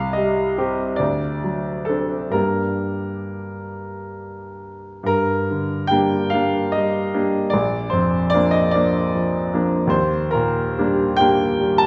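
Yearning and wistful, this short excerpt from a romantic classical nocturne for solo piano unfolds in a rubato 6/8, with a clear concert grand sitting up front, its deep bass and open tone ringing through a moderate recital hall reverb as the harmony drifts from C minor and D7 to G minor, then on to B-flat and E-flat major seventh.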